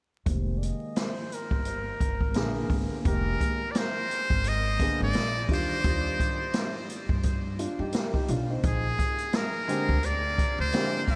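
A buzzy, breathy trumpet with a metal mute carries the melody up front, its thin, brilliant tone softened by a low-pass filter and trailed by delay, over a smoky, cool jazz-hop groove at 86 BPM in F dorian with a 16th-note swing. An intimate upright piano with audible action noise and long sustain comps through chords such as Fm11, Bb7b9 and Ebmaj9, while a woody pizzicato upright bass anchors the low end and a roomy, distant jazz kit with a boomy kick, medium-tuned snare and hi-hat adds gritty 12-bit sampler texture. This short cut from a longer piece is soaked in huge ambient reverb and vinyl crackle for a dreamy feel, with a filter sweep running from 0.3 to 3.1 seconds.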